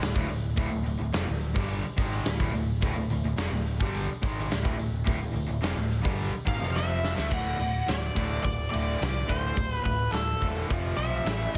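A straight 4/4 groove at 107 BPM drives this swaggering, powerful hard rock excerpt, cut from a longer piece and tuned to A4 = 439 Hz. The huge arena drum kit sits up front in a big, natural room sound, with a punchy kick, a medium-tuned snare, hi-hat, and crash and ride cymbals, while a picked electric bass adds a warm, amped, punchy low end. Two overdriven guitars play the riff over D5 and F5 power chords: a bright picked electric guitar, and a hollow-body semi-hollow guitar with a warmer tone tucked into the background. At 6.5 s a dark, nasal lead guitar with a parked wah steps to the front with a melody, carrying overdrive and a slapback echo. A drum fill leads into the second section at 7.3 s, and the whole mix has light reverb, a small-room ambience and a heavily compressed, radio-like sound.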